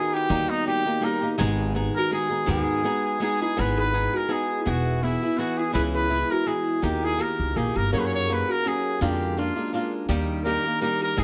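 A clear, classical-style trumpet with light vibrato and plate reverb carries the melody in this romantic, festive mariachi excerpt in a swung 3/4. Beside it, a kalimba adds a ringing, dry second line with a thumbnail pluck, while a fingerpicked flamenco guitar, finger squeaks audible, supplies the accompaniment. A thumpy pizzicato upright bass with steel strings enters at 0.3 s, and the music moves into a new section at 3.6 s, all captured in a close, detailed, lightly reverberant sound.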